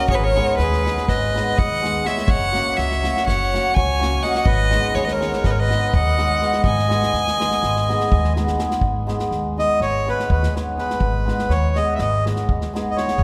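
Set in a straight 9/8 at 247 BPM counted in eighths, this restless, bittersweet Balkan wedding-band piece in G# minor puts a smooth, up-front bowed violin melody with vibrato over a reedy, airy accordion second line, a shimmering hammered dulcimer, a woody pizzicato upright bass and a drum kit with a tight kick and bundle sticks sitting in the background, the band heard in a long cathedral reverb, until the violin stops at 8.3 seconds and the accordion takes a solo from 8.8 seconds.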